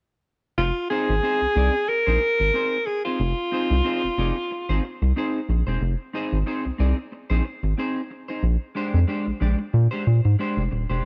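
Light studio reverb gives this short funk excerpt a polished, close sound, with a sly, funky mood and a gently swung sixteenth-note feel. A round analog bass sits up front from 0.6 seconds, its deep, dark tone blending square, sine and sawtooth colours with a fast attack and sustained notes. A clear alto saxophone, also up front, carries the melody in a vintage jazz style with light vibrato until 5.0 seconds. A clean, picked electric guitar supplies accompaniment, its dark tone dressed in lush chorus and sitting lower in the mix than the other parts. The harmony rests on Fm7 before shifting to Bb13 at 8.4 seconds.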